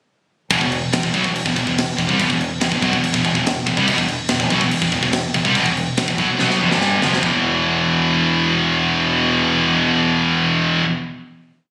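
This short heavy metal piece opens at 0.5 seconds with two distorted, high-gain electric guitars, one of them scooped, both picked and up front as they drive a power-chord riff in a straight, aggressive four. An overdriven, fingered electric bass with a growling, amped edge doubles that riff in driving eighth notes far below. A tight metal drum kit pushes a hard groove beneath them, its bright cymbals, medium-tuned snare and tight kick sitting in an airy, polished big-room sound. A drum fill at 6.4 seconds leads into a final E5 power chord at 7.2 seconds, which the guitars and bass let ring out. The whole thing has a raw, compressed feel, as if heard on a phone in the room, with a light touch of reverb.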